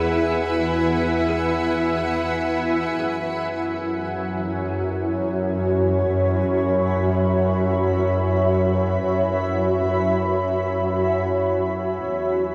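A peaceful, serene ambient passage in free time opens with a blurred, evolving granular cloud pad holding sustained chords up front, its slow attack and long release softened by its own reverb. Beneath it, a chamber double bass section plays bowed low notes with light vibrato, its tone earthy and nasal despite sitting at a distance. For the first moments, a very quiet kalimba adds woody, thumb-plucked arpeggios until 3.5 seconds, while a dark violin section provides a soft-attacked, bowed texture in the background until 3.0 seconds. The harmony moves from E to F#7sus4 at 3.0 seconds, where a filter sweep begins on the pad and continues until the fragment ends at 12.5 seconds. The whole is bathed in a huge, wet reverb that places the music in a vast, echoing space.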